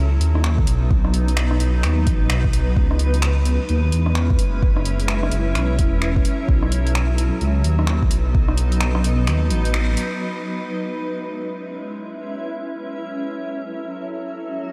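A dreamy, reverb-soaked mix with a huge ambient wash sets a rainy, nocturnal mood in this future garage cut from a longer piece, moving at 129 BPM in 4/4 with a swung sixteenth-note feel. A bright, cloudy granular pad holds sustained chords throughout, its slow-attack, evolving texture blurred by its own built-in reverb and pumping against the sidechain as the harmony moves through B, C#m7 and F#m7. Underneath, a dark detuned saw bass sits up front with a deep, rumbling, beating tone, also pumping, until it stops at 10.0 s. A deep house drum kit of finger snaps, hi-hat and rim click plays with overdrive and low-pass filtering, its muffled small-room character joined by an overdriven, deep electronic kick. The kick drops out at 9.3 s just before a band accent at 9.7 s, after which the pad carries the closing section alone.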